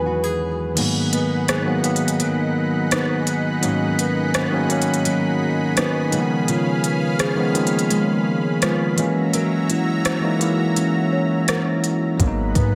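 Bathed in a spacious concert-hall reverb, this moody, longing contemporary R&B excerpt in G# minor at 84 BPM opens with an up-front, bell-like tine electric piano, a lush chorused unison pad and a thumb-plucked nylon-string guitar with tape echo; smooth, tape-toned drums slip in at 0.8 s with hi-hat, rim click and crash, while a soft FM synth bell sits in the background, before the kick and a deep, boomy 808-style bass finally land at 12.2 s.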